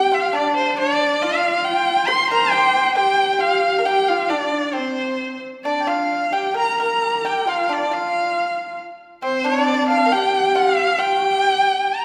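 A bright, focused erhu carries the melody from start to finish, its single bowed voice sitting up front with vibrato and portamento gliding between notes. Beneath it, a horsehead fiddle plays a second line in a husky, intimate tone, bowed on horsehair strings with light vibrato, a soft attack, an airy bow and its own sliding portamento. A pipa adds another supporting line, played with fingerpicks in a dry, percussive voice. This is a tender, wistful piece of Chinese traditional music for a small chamber ensemble, set in G yu mode at a rubato 68 BPM in 2/4. A wet, hall-like reverb with a 1.9-second decay surrounds the trio, and the 12-second passage is cut from a longer piece.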